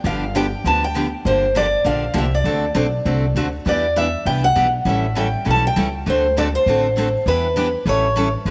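A picked steel-string acoustic guitar and a woody, thumpy pizzicato upright bass with dark gut strings open this lively, swinging jazz manouche excerpt at 200 BPM, joined at 0.1 s by a bright picked guitar carrying the melody and a fresh-stringed second rhythm guitar tucked in the background, as the chords move from G7 through D7 and Em7 to A7 under a moderate plate reverb.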